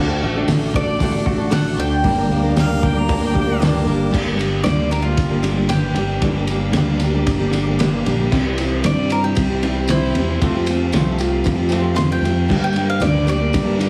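Wistful and dusty, this folk rock and heartland rock excerpt sets a jumbo steel-string acoustic guitar, a twangy chorus-tinged electric guitar riff in the background, a round fingered bass, a very quiet slow-rotary tonewheel organ and a clear harmonica line at 2.6 seconds beneath a bright double-strung mandolin that takes a solo from 4.1 seconds, while a muffled, cloth-damped thuddy drum kit with a fat snare and a jingly vintage tambourine enter at 0.5 seconds, all in a small room with a heavily compressed radio sound.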